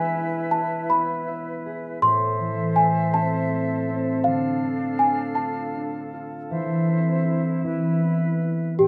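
A bell-like, delicate celesta carries the melody of this wistful, dreamy lullaby, its sweet tone shaped by medium felt hammers as it moves between G4 and C6. Beneath it, a thumb-plucked concert harp sits up front with a ringing accompaniment reaching from A2 to E5, while a small flute group holds pure, vibrato-tinged sustained chords with a crisp attack at a softer level. The piece moves gently at 54 BPM in a straight 6/8, in A harmonic minor. The harmony travels from E through Am and Dm to Am/E, settling on a bare E5 at 7.6 seconds. All three parts play together throughout this short fragment of a longer piece, which lasts 8.9 seconds and is framed by a moderate studio ambience.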